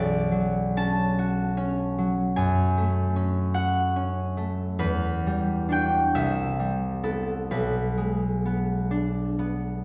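A solo concert harp sits up front in this short classical passage, its fingerpicked tones ringing across a span from B1 to A5 in a gentle, mysterious mood. In a rubato 6/8 at roughly 38-52 BPM in dotted quarters, the harmony moves through Bmadd9, F#madd9, Em9 and Cmaj7 before settling on Bm6 at 7.5 seconds, colouring B dorian with a tuning of A4 = 441 Hz. A wet recital hall reverb with a 1.7-second decay surrounds the harp's acoustic glow, and the piece is cut from a longer work.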